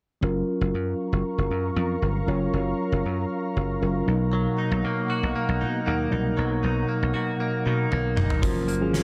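A clean tine electric piano and a punchy, foam-muted thumbed slap bass open this uplifting, nostalgic 1980s-style pop excerpt at 117 BPM in F# major, with an ethereal, detuned pad drifting in at 0.8 seconds, softened by ensemble chorus and its own reverb. Over a move from F#maj7 to Bmaj7, a twangy, compressed clean electric guitar picks out a riff from 4.3 seconds, coloured by lush chorus and digital delay. A gated drum kit with a fat snare arrives at 7.9 seconds with a fill, all set in a dark recital-hall ambience.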